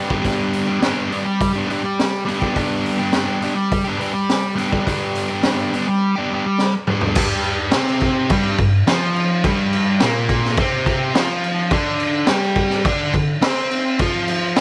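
An overdriven, double-tracked electric guitar opens this rowdy, raw garage rock passage at 0.0 seconds, playing a picked riff in G major that ranges from G2 to C5 and sits up front with a warm bite. A raw garage drum kit joins almost at once, its crash cymbal, hi-hat, boomy kick, high-tuned snare and toms sounding gritty and saturated, mid-forward in a small room with a rolled-off top. The tempo is a straight 105 BPM in 4/4. A drum fill from 6.6 to 7.2 seconds leads into the second section, where the harmony moves from G to Gmadd11 and then to Dm7 at 11.7 seconds. A moderate plate reverb adds a roomy tail to this short passage cut from a longer piece.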